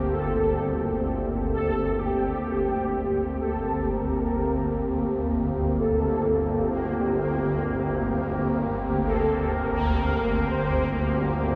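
A swarming, detuned drone sits up front in this vast, ominous dark ambient piece at 64 BPM in G minor, beneath a mellow, horn-like synth lead with vibrato through ensemble chorus and diffuse delay, an airy sawtooth pad sweeping through sustained chords, and a bubbling, resonant filter-stepped texture that joins at 3.9 seconds, all bathed in a huge, cavernous reverb.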